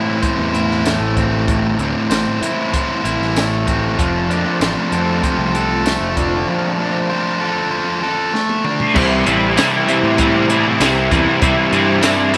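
A fuzz guitar sits up front with a compressed, distorted riff alongside an overdriven electric guitar with ensemble chorus and a growling, punchy fingered bass, all moving from Am to F6 in this bittersweet, moody indie rock section. A compact cocktail drum kit, dry with dark cymbals, a high-tuned snare and tambourine, enters at 0.2 seconds and plays a fill at 8.3 seconds. The song then moves to Cadd9, where a buzzy vintage combo organ adds barely audible sustained chords with light vibrato inside a small, lightly reverberant room.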